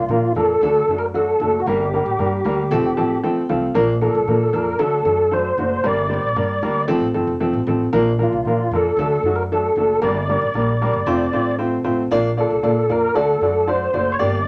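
A moderate studio reverb surrounds this danceable, warm stretch of uptempo 1960s-style soul at 115 BPM in Bb major, where a clean, up-front tonewheel organ carries the melody with chorus vibrato, key click and a slow rotary speaker, a woody, boxy upright piano with short sustain accompanies and adds a fill from 2.7 to 3.7 seconds, and a growly pizzicato upright bass with steel strings and tube saturation anchors the low end.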